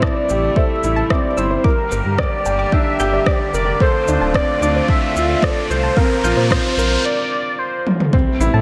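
A moderate recital-hall reverb surrounds this short, moving and intimate piece of piano and strings electronica, cut from a longer track and set at 111 BPM in a straight 4/4. A velvety sawtooth lead with chorus and vibrato carries the melody, while a felt-muted upright piano plays a mellow riff through digital delay, its action noise audible. Beneath them, a dark detuned saw bass rumbles up front with sidechain pumping, and a con sordino string quartet holds veiled chords in the background, pumping too. A soft, round pluck adds nasal arpeggios with chorus and delay, and an overdriven, layered electronic kick sits forward alongside an organic electronic kit of rim clicks, shaker and toms re-recorded in a large room. The passage builds over chords moving from Am7 through Gm and Dm7 to Bbsus2: an electronic riser enters at 1.6 seconds, a break arrives at 7.1 seconds, and a drum fill leads to an impact at 8.1 seconds.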